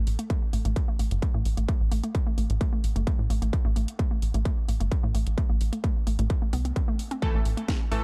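Driving peak-time techno at 130 BPM in A minor, this intense, industrial excerpt sets a tight, punchy sawtooth sequencer bass with sidechain pumping against a distorted, up-front electronic kick, an overdriven kit with a cracking snare and hi-hat, and a woody, wave-folded pluck riff coloured by chorus, tube saturation and delay, while a filter sweep runs across a synth arpeggio sound throughout and a detuned supersaw stab enters at 7.2 seconds, all within a dark, digital ambience.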